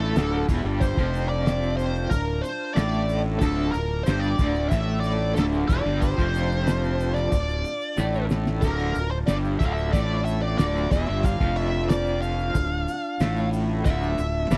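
A dry, close 1970s-style studio sound frames this trippy, mysterious psychedelic rock excerpt in D minor, moving at 92 BPM in a straight 4/4 and resting on a Dm chord. A bright, double-tracked garage guitar plays an overdriven, tremolo-treated riff up front beside a round, fuzzy fingered bass. Above them, a bluesy lead guitar carries the melody through wah, distortion and tape echo, while a reedy vintage combo organ holds lush chorused chords in the background. From 0.2 s a muffled, cloth-damped drum kit with a fat snare and tight kick thuds along with a grainy egg shaker, and the drums play a fill at 8.0 s.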